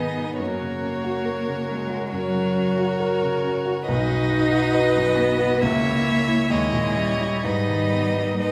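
A wet recital-hall reverb, with a decay of about 1.6 seconds, surrounds this short excerpt from a slow, romantic piano quintet movement, giving it the air of a church or concert hall. The mood is melancholic and elegiac, moving at 68 BPM in 4/4 with a flexible rubato, tuned to A4 = 441 Hz. A clear, bowed violin sings the melody with smooth, even vibrato. A second violin, rich and set more distant, and a focused cello shape supporting lines beneath it. A close, bowed viola and an intimate, up-front baby grand piano, warm and natural with its action noise audible, fill in the accompaniment. The harmony drifts from F# through B and a diminished chord to a D#7b9 before settling on G#m around 7.4 seconds, and the five players sound together through the whole 8.5 seconds.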